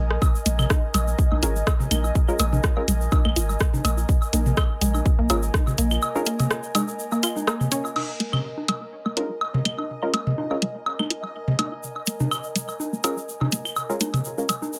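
Minimal techno at 124 BPM in 4/4 with a light swing on the sixteenths, quirky and hypnotic, sitting on a Bbm7 chord in this clip cut from a longer piece. A juicy, squelchy blip pluck carries the riff through chorus and digital delay, with a filter sweep on its arpeggio over the first 8.0 seconds, while a punchy sine sub bass with a pitch-drop attack holds the low end up front until 6.0 seconds, where a break begins. An airy, breathy pad with a moving notch and a bubbling stepped-filter texture with built-in reverb, set in the background, both pump against the sidechain beneath them. A layered electronic kick, a house kit with bright hats, crash and rim click, and tape-echoed electronic woodblock, toms, claves and congas with an analog character drive the groove, together with a grainy, saturated egg shaker. Muted, deep dub chord stabs, filtered and evolving, return through tape echo in the second section after 8.0 seconds, all within a light reverb.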